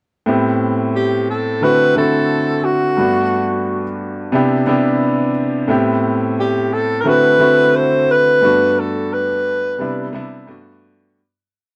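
A clear baby grand piano opens this short, silky soul piece at 0.3 s, playing rootless voicings in a pushed chord rhythm over Am7, D7, Gmaj7 and Cmaj7 in A dorian, with long sustain and audible action noise at a relaxed 88 BPM with a gentle 16th-note swing. At 1.0 s a breathy alto saxophone takes the jazz-style solo melody, built from song-like motifs with a soft attack, light vibrato and a whispered, intimate tone. The dry, close 1970s-style studio sound carries light reverb, and the piece fades out from 8.4 s to its end at 11.2 s.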